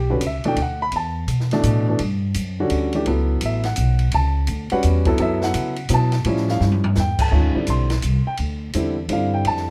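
A close, detailed and nearly dry recording puts an intimate baby grand piano, with its action noise audible, and a woody pizzicato upright bass up front, while an acoustic small-room drum kit with dark cymbals, a medium-tuned snare and a boomy kick sits further back. This intense, spiritual modal jazz fragment in E dorian swings at 169 BPM in 3/4, the piano comping over Em69 before moving to A7b13 and then Dm11 at 7.3 seconds. The drums enter at 0.2 seconds, crash, ride, hi-hat and toms all in play, and a brief drum fill at 6.6 seconds leads into the repeat of the opening section before the cut.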